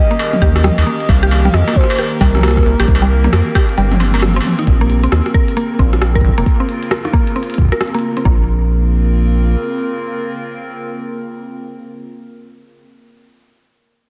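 A lo-fi, warbling pad and a velvety synth lead open this melancholic, cerebral IDM excerpt together. The lead carries a smooth melody through chorus and delay, while the pad's detuned, sustained chords move with phaser and sidechain pumping. Almost at once a woody, mallet-like pluck spins arpeggios through tape echo, joined by an overdriven industrial kit of crisp hats, cabasa, rim clicks, toms and struck metal, and a deep, up-front electronic kick. A rubbery, hollow square bass with a resonant filter pluck sits prominently beneath, giving the swung 16th-note groove a bouncy weight. The lead ends with a band accent at 4.2 seconds while the kick briefly drops out, and a drum fill leads into a section built on a Bbmadd9 chord. The drums and pluck fall away by 8.5 seconds, leaving the bass and the nostalgic pad in a dense, heavily limited mix touched with light digital ambience.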